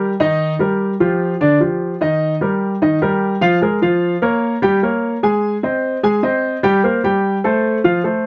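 A baby grand piano, open-toned with long sustain and placed up front, plays alone through this sophisticated, danceable jazz fragment at 149 BPM in a straight 4/4, moving from Eb through Ebadd9, Bbm7, Gdim and Abmaj7 to F over 8.3 seconds, captured by close, detailed microphones in light reverb.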